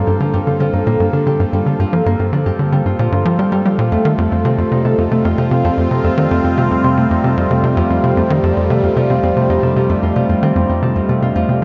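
A tight, punchy sequencer bass drives this expansive, hypnotic piece of ambient space music, its sawtooth-and-square riff sitting up front with a fast-attack filter pluck that decays into a mellow tone. Over it, a bright Celtic harp rings out fingerpicked arpeggios, also up front and trailed by tape echo, which colours the bass as well. A phased analog pad fills in sustained chords with a swirling, detuned, full-bodied sound, a slow attack and long release, treated with phaser and chorus. Beneath everything sits a very quiet analog drone, an evolving low bed of sine and pulse-width-modulated tones with a touch of chorus. At 113 BPM in a straight 4/4, the harmony moves from Gm7 to F7 at 3.9 seconds. All four parts play throughout this brief cut from a longer piece, bathed in a huge reverb with an 8.8-second decay that places them in a vast, echoing space.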